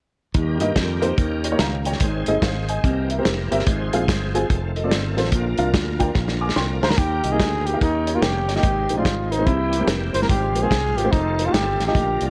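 A warm, soft-attacked flugelhorn with light vibrato takes the melody at 6.8 seconds, up front over an uplifting, jubilant uptempo gospel groove at 145 BPM in Eb major, swung on the eighths. A woody, boxy upright piano, a punchy, bright fingered electric bass and a tight soul drum kit with a rolled-off top drive the accompaniment. A shouting, lightly overdriven tonewheel organ through a fast rotary speaker holds sustained chords, and a drum fill at 6.2 seconds leads into the second section, all in a small room coloured by worn, warbling cassette-tape pitch drift.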